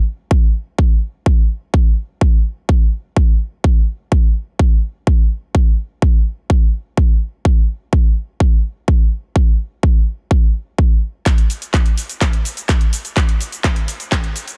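A punchy, overdriven electronic kick drum drives this powerful, euphoric EDM cut from the first moments, sitting up front in a straight 4/4 pulse. It carries the opening stretch on its own, its layered, produced thump filling the dark, warm production with little reverb around it. At 11.3 seconds a big-room dance drum kit joins, adding handclaps, hi-hat and shaker that are also overdriven but sit much lower in the mix, with high-pass filtering thinning out its snare, hats and percussion. This arrival marks a build-up with a drum fill and a filter sweep, lifting the energy. The kick stops at 14.2 seconds, leaving the kit to finish the brief passage on its own.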